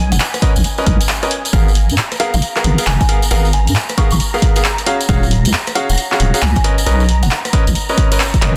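A deep, dark wobble bass with chorus and sidechain pumping sits up front under a silky string machine's phased, sustained chords in the background, opening this skippy, moody two-step UK garage excerpt in G# dorian at 135 BPM with a swung 16th feel. Woody kalimba melodies with digital delay, a punchy analog drum machine's handclaps, hi-hat and rim click, and a jingly, close tambourine enter at 0.1 seconds, followed by brilliant grand piano stabs with audible action noise and a layered, tape-warm electronic kick at 0.4 seconds, all moving through Bmaj9, G#m69 and D#m11 in a dense, heavily limited mix with light reverb.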